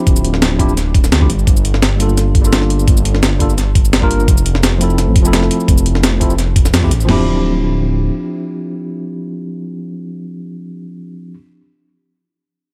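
A straight 4/4 liquid drum and bass groove rolls along at 171 BPM in D minor, driven by two gritty, compressed, sampler-style breakbeat kits re-recorded in a small room: one carries a thumpy kick, medium-tuned snare, toms and crash, while the up-front other adds hi-hat, shaker and snare. Beneath them a deep, rumbling detuned saw bass beats in the low register, and a worn, slightly out-of-tune tine electric piano, lightly overdriven and echoing through delay, drifts over dreamy Dm11, Gm9 and Fmaj7 chords. After a band accent at 6.7 seconds the drums fall away, the bass stops at 8.1 seconds, and the electric piano lingers alone until 11.4 seconds in this excerpt from a longer piece.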